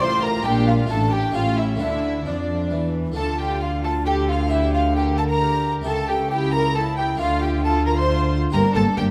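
A driving 3/4 pulse at 134 BPM, straight in feel, carries this dramatic baroque-style concerto movement in D minor, cut from a longer piece. An airy, wooden baroque flute with a crisp attack shares the melody with a chamber violin section, while a second violin section plays a supporting line; a viola section and a harpsichord sitting in the background fill in the accompaniment over a nasal cello section and an up-front double bass section, the strings all bowed with gut-string tone and light vibrato. The close, detailed recording adds light reverb, and the harmony moves through Bb7 and A7 toward Em7b5/D and A7/C# before reaching Gm at 8.5 seconds.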